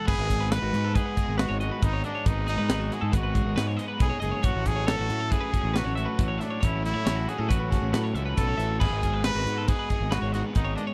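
Wistful yet playful, this short math rock and midwest emo excerpt moves in an odd 5/4 metre with a straight feel, drifting from G#m7 to F#m9/A and back. A clear trumpet carries the melody as a smooth-topped solo voice with vibrato, its slapback echo adding a pop-style sheen. Two bright, twangy twelve-string electric guitars ring out clean and picked, one holding down the accompaniment while a very quiet second traces arpeggios higher up. Tucked in the background, a double-tracked overdriven electric guitar plays a riff with a warm tone. Up front, a fuzz-laden fingered electric bass sounds dark and round, and a crisp fusion drum kit with a high-tuned snare, punchy kick, hi-hat and crash gives a polished, airy drive. The sound is dry and close, in a 1970s-style studio manner with little reverb.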